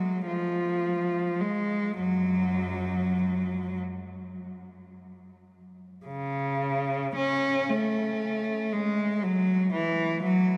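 A single bowed cello sings alone in this brief classical fragment, its rich, smooth tone carrying vibrato as it moves through a mournful, meditative line in a free, rubato 6/8. Placed up front, the instrument is bathed in a deep cathedral reverb whose long tail lingers around every note. Near 6.1 s the music settles into a new passage, and it is cut off at 10.6 s.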